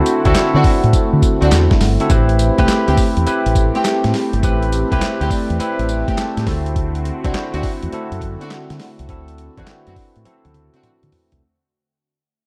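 A round, dark fingered electric bass sits up front in this bouncy, confident new jack swing cut from a longer R&B piece, riding a swung sixteenth-note feel over D7 and Am7 chords. Beside it, a gritty, compressed sampler-style boom bap kit brings a thumpy kick, medium-tuned snare, handclaps, hi-hat, tambourine and toms. A clean, bright tine electric piano with a bell-like ring and analog chorus carries the accompaniment and plays a fill at 5.0 seconds, while a lush, woody studio string section adds bowed stabs with vibrato. Deep in the background, a swirling sawtooth pad with detuning, slow attack and long release holds sustained chords through phaser and chorus. The dark, warm production has light reverb, the music begins fading out at 2.1 seconds, and a drum fill arrives at 10.3 seconds.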